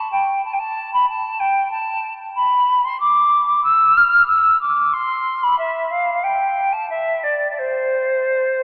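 Grave and introspective, this brief baroque-style classical fantasia in C major unfolds with rubato at 93 BPM in 3/4, as a solo silver concert flute with a pure, metallic tone, vibrato and a crisp attack ranges from C5 to F6 across 8.6 seconds, steeped in a wet cathedral reverb yet filtered through a telephone sound, an excerpt cut from a longer piece.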